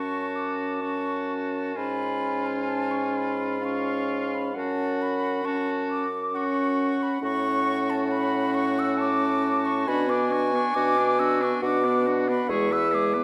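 In an unhurried 3/4 at 64-70 BPM, played with a flexible rubato, this slow romantic movement for wind quintet sighs along in F# minor with a melancholic, yearning mood. All five instruments sound together across the 13.2-second excerpt, cut from a longer piece, with the clarinet dropping out just before the end. A silver concert flute carries the melody high in its register, its tone hollow and airy with vibrato and tongued notes. A bright oboe shapes a second line in its lower range, while a clear clarinet and a warm French horn with light vibrato fill out the accompaniment. Beneath them, a punchy, vintage-toned bassoon holds the bass up front in the mix. The harmony moves from F# minor through C#/G# and F#m/A to Bm before arriving on E, and a dark production sits in the lush reverb of a scoring stage.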